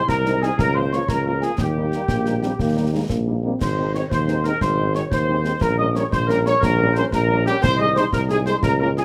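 A wooden, pure-toned piccolo opens this spirited, rousing military-style march for wind band, joined almost at once by the trumpet section carrying the melody with light vibrato and a vintage, warm glow. Behind them, a distant, roomy woodwind section adds a second line, while a mellow French horn section fills in accompaniment from the background. A clear tuba sits up front on the bass, and concert snare drum, concert bass drum and dark-toned clash cymbals drive the straight 6/8 pulse with a close, dry sound. A mellow euphonium with a smooth top slips in briefly around 2.1 seconds as another background line, dropping out by 3.6 seconds. The band plays in a large studio with moderate reverb and close, detailed microphones, in a short passage cut from a longer piece.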